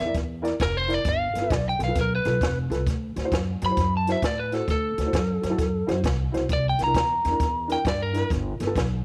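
Rollicking and gritty, this short electric blues shuffle excerpt at 132 BPM swings along as a warm, slightly broken-up lead guitar solos up front over a dark, boxy upright piano, a woody, growly pizzicato upright bass and a dry, compact cocktail drum kit with a high-tuned snare and punchy kick, all in light reverb through ninth chords from C9 to G9 and D9.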